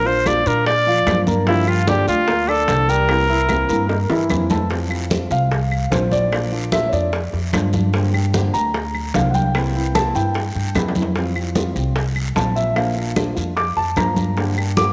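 A clear, smooth-topped trumpet with vibrato sings the opening melody up front until 4.3 seconds in this sunny excerpt of Cuban son and guajira, over a woody, thumpy pizzicato upright bass on gut strings and a thumb-plucked flamenco guitar. After a drum fill, a dark, mellow vintage grand piano takes a solo of arpeggios from 4.7 seconds, as tight, saturated high-tuned bongos, thick-skinned congas played with hard hands, dry claves and a raspy guiro keep the percussion bustling, with another fill at 10.8 seconds. A moderate echo-chamber reverb gives the recording a roomy sheen.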